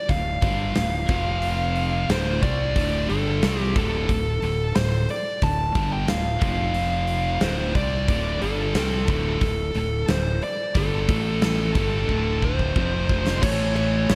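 Heavy and menacing, this hard rock excerpt is led by an up-front, dark high-gain lead guitar carrying the melody over a scooped, bright rhythm guitar and a sludgy overdriven guitar sitting in the background, both playing riffs around power chords. A growly fuzz bass and a huge arena drum kit with punchy kick, bright cymbals and gated reverb drive it forward, with a drum fill from 12.1 seconds before a double-tracked heavy guitar joins at 13.4 seconds. The sound is bright 1980s-style digital production bathed in lush hall reverb.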